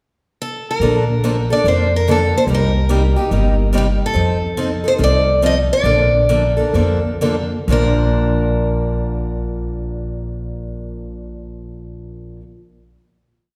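Heard in a wet recital hall with a long, lingering reverb, this charming, swinging piece of acoustic string swing begins with a brief pickup from a picked steel-string guitar before a second guitar and an upright bass enter at 0.8 seconds. Both guitars are bright, boxy parlour instruments placed up front. One states a motif-based melody in sentence-like phrases, while the other, on fresh strings, picks four to the bar with short accents on two and four, and the woody, thumpy gut-string bass plays a two-beat root-and-fifth line. The music slows from 4.2 seconds and settles onto a final chord at 7.7 seconds.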